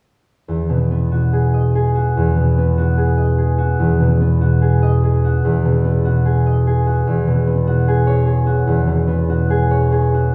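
A concert harp opens at 0.5 seconds, its warm, thumb-plucked tone ringing through a pastoral, luminous classical passage in E major. The pace sits around 73 BPM in 4/4, but the feel is rubato, so the pulse breathes freely. In an accompanying role, the acoustic harp spans E2 to D#5, sounding up front while resting on an Emaj9 chord before moving to E69 at 7.1 seconds. A wet recital-hall reverb with a 1.6-second decay surrounds the performance, and the listener seems to be placed further back in the room. Tuned to A4 = 441 Hz, this short passage is cut from a longer piece and closes at 10.3 seconds.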